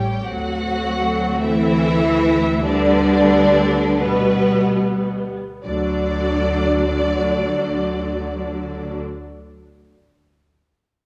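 Up-front, expressive violas carry the accompaniment in this serene, rubato slow movement for string orchestra in 6/8, with a smooth, distant violin melody and a lush second violin line above, rich cellos and a focused double bass below, the pace easing over the first 5.7 seconds, the whole passage bathed in scoring-stage reverb and the warbling pitch drift of worn cassette tape.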